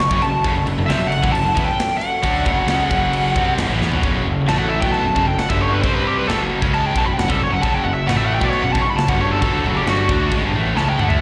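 A high-gain lead guitar with slapback echo and analog delay leads this relentless, aggressive heavy metal excerpt in F# phrygian at 134 BPM, moving from melody into a solo at 4.0 seconds over F#m and C5 chords. Two distorted, picked rhythm guitars drive riffs, one tight and the other compressed and set in the background, while an up-front, punchy fuzz bass and a polished metal kit with bright cymbals, a tight kick and drum fills at 3.8 and 10.8 seconds keep the pulse straight in 4/4. A very quiet, swirling analog pad with phaser and chorus sustains detuned sawtooth chords beneath, all heard as a live gig through the venue's PA with recital hall reverb.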